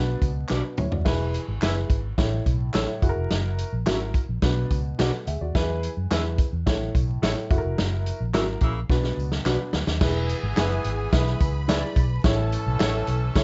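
A straight 4/4 groove at 107 BPM drives this joyful, danceable stretch of uptempo 1960s-style soul in E mixolydian, with a vintage drum kit up front, its punchy kick and medium-tuned snare marked by fills at 0.5 and 8.9 seconds, while a round, foam-muted fingered bass, a woody, slightly detuned upright piano with audible action noise, and very quiet tambourine and handclaps fill out the rhythm section over a Bm, E, A, F#7 cycle. A bright, twangy guitar through a small old amp adds picked stabs with harmonic tremolo from the background, and during a band accent an edgy, close-miked saxophone section enters at 8.3 seconds, followed by a lush, bowed string section at 10.0 seconds. The dark production carries light reverb and vinyl crackle, with a rolled-off top.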